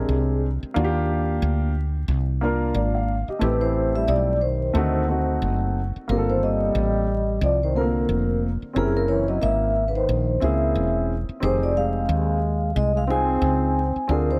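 Jazz-hop at 90 BPM with a swung 16th-note feel and a mellow, nocturnal mood, this short cut from a longer piece sets a ringing vibraphone melody with soft mallets and medium motor vibrato over a close-miked trombone second line with light vibrato, a dark, up-front baby grand piano accompanying through chords like Ebmaj7, Am9 and Gm11, and a round, woody fretless electric bass, all under light reverb and vinyl crackle.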